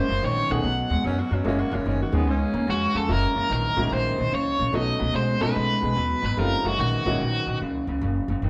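Gritty and laid-back, this swung blues excerpt sets an up-front, bright overdriven electric guitar melody with harmonic tremolo over a worn, brilliant grand piano, a slightly broken-up, lo-fi riff from an electric guitar through a small old amp with spring reverb, and a woody pizzicato upright bass, while a raspy, breathy tenor saxophone growls a second line from 1.1 to 3.0 seconds, the band playing live together in a stone room.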